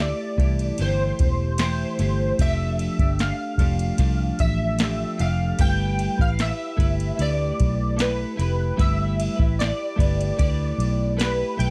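Sunny and dreamy, this slow indie and bedroom pop fragment at 75 BPM in G mixolydian drifts over C6, F69 and G69 chords. Glossy, airy retro synth keys carry the melody, their detuned pulse and sawtooth tones dressed in ensemble chorus, slapback echo and plate reverb. A bright, twangy, picked twelve-string electric guitar with warbly pitch drift plays beneath, a round, foam-muted fingered bass sits up front, and a soft analog rhythm box with a deep kick and crisp snare joins at 0.4 s, all within a dark, lightly reverberant production.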